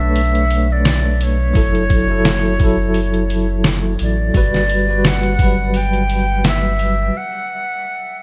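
Trip hop at 86 BPM with a light swing, hypnotic and cinematic, where a breathy jazz flute carries the melody with a chiffy attack and tape echo over a bell-like tine electric piano roughened by tremolo and vintage 12-bit sampler grit, a round dub sub bass, a gritty pitched-down sampler drum kit with a thumpy kick, and a close, dry egg shaker and triangle tucked in the background, moving through Bm9, F#m7 and Gmaj7 before the drums drop out at 7.0 seconds, the bass and percussion at 7.1 and the electric piano at 7.2, leaving the flute to finish by itself until 8.2 seconds in this short, lightly reverberant cut with a bright 1980s-style digital sheen.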